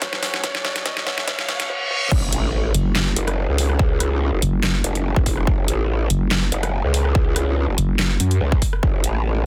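A half-time 4/4 pulse at 143 BPM drives this chaotic, heavy wobble dubstep fragment in F# minor, where a felt-muted upright piano with audible action noise and dub echo sings a soft melody over a lush supersaw pad with sidechain pumping, while overdriven drums with a punchy kick and deep snare fill out a build-up with a riser and reverse cymbal before the drop at 2.1 seconds brings an impact and an aggressive growling bass, joined shortly after by a nasal vowel-sweep wobble bass, both saturated and chorused, up front in a dense, heavily limited, dry mix.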